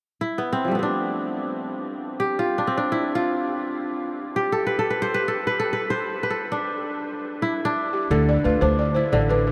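West African traditional music in free time and D dorian over a Dm chord, this hypnotic, reflective fragment opens with a crisp, ringing, fingerpicked kora playing arpeggios up front on its own, joined at 7.9 s by a buzzing, woody balafon melody struck with soft rubber mallets and at 8.1 s by a thumpy, gut-string pizzicato upright bass, set within a huge ambient reverb that evokes a vast, echoing space.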